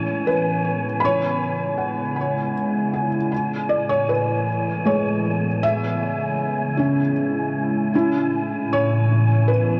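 A warbling, tape-like pad sits up front in this serene ambient fragment, fading in across its full 9.8 seconds. Its detuned sawtooth and triangle tones are coloured by chorus, phaser and their own reverb. Its slow-blooming chords move between Amaj7 and C#m7 in an unhurried 3/4 feel. A felt-muted upright piano carries the melody, soft and dark with thick felt and audible action noise, its notes trailed by delay. A second felt-muted upright piano plays arpeggios, intimate and gently warm, its short sustain also echoed by delay, while a breathy, wind-like tuned noise layer hovers high and dim in its own reverb. The recording rests in a huge, wet space with the worn pitch drift of old cassette tape, giving the piece a peaceful, nostalgic glow.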